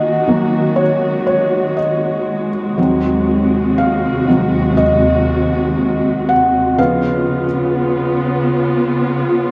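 Pop ballad at a slow 60 BPM in 4/4, heartfelt and hopeful, where an intimate, mellow felt-muted upright piano with audible action noise carries the accompaniment up front while a studio string section sustains expressive bowed chords with vibrato, portamento and a smooth top, moving from D#m to G#7/D# at 2.8 seconds and C#7 at 6.8 seconds, all in a dreamy mix soaked in a huge ambient reverb over small room ambience, cut from a longer piece.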